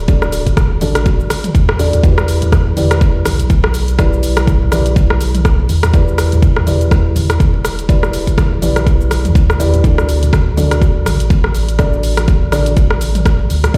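Afro house at 123 BPM in E minor with a 16th-note swing, this spiritual, hypnotic excerpt cut from a longer piece moves from D to Em7 and back to D. A soft, felt-muted upright piano plays boxy, intimate stabs with audible action noise, delay and sidechain pumping over a round, sine-like sub bass that also pumps, while an up-front, deep electronic kick drives a layered deep house kit of dark hi-hats, rim click, shaker and toms. Close acoustic congas sit in the background, and the whole mix carries light digital ambience and the reverb of a bare stone room, as if played on a big sound system.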